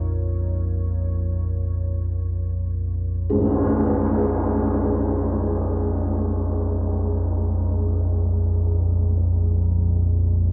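Dark ambient drone in free time, this cavernous, ominous excerpt sits in Bb minor and is steeped in a wet echo chamber reverb. A deep rumbling drone runs the full length up front, its triangle and sawtooth layers rising slowly and sustaining with a long release and its own built-in reverb. For the first 3.3 seconds a moody analog pad holds Bb minor chords, detuned sawtooth tones over a sub octave, softened by chorus and sitting low in the mix. At 3.3 seconds the harmony shifts to a bare Bb5 as an up-front tam-tam strikes briefly, its bright acoustic cymbal tone passed through a low-pass filter and an analog delay. At the same moment a bronze singing bowl, struck with a suede striker, begins ringing in the background until the end, close-miked and dry, its metallic, meditative tone marked by slow beating.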